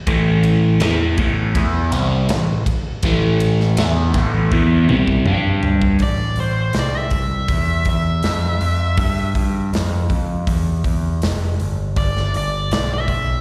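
Smoky and heavy, this blues rock power trio excerpt with a southern rock lean moves at a straight 81 BPM in A minor, cut from a longer piece and heard as a live gig through the venue's PA, with small-room ambience and recital hall reverb. A crunchy, bright, double-tracked overdriven guitar drives the opening riff with phaser and slapback echo, over a growling, overdriven picked bass and a big, punchy acoustic drum kit with bright cymbals, whose fill from 4.5 to 6.0 seconds hands off to the next passage. At 6.0 seconds the riff guitar stops and a dark octave-fuzz lead guitar takes the melody in a high register, coated in slapback and tape echo, as the chords move from Am toward G.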